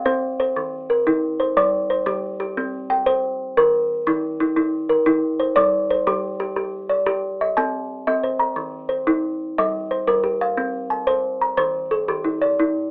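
A lone kalimba opens this short cut from a longer southern African traditional piece, its woody, thumbnail-plucked notes sounding short and up front inside a hollow box body. The playing sits in 12/8 with a straight feel, and the hypnotic mood comes from one phrase heard twice, with the repeat beginning at 7.6 seconds. Its harmony circles Eb5, G5 and C5 shapes before touching Cm and Gm in the second pass. The tuning is an equal seven-note scale, so the intervals have a gently unfamiliar colour. Light reverb and a band-limited, telephone-like sound give the recording a vintage character through to its close at 12.9 seconds.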